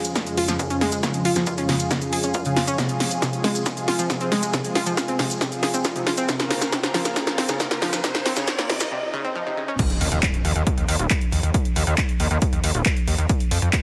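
Through a heavily compressed, radio-like sound with lossy artefacts and light reverb, this bittersweet uplifting trance excerpt at 137 BPM builds over a lush, airy unison pad, a round chorused analog pluck arpeggio with delay, a grainy background cabasa, a punchy overdriven analog drum machine, an overdriven electronic kick and a very quiet riser, swell and impact, moving through Db/F, Fm and Bbmadd9 to a break at 8.9 seconds before the drop at 9.8 seconds, where a gritty, wave-folded synth bass enters up front with sidechain pumping.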